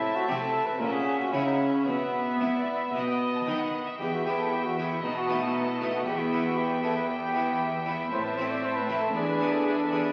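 A dark, lightly vibrato solo trumpet leads this brilliant, festive baroque-style concerto excerpt in E minor at 116 BPM, carried over an airy, up-front harpsichord, a rich, intense cello section on the bass, a focused viola section, a smooth, even second violin line and a background violin melody, all bathed in a recital-hall reverb and the crackle of a very old 78 rpm record.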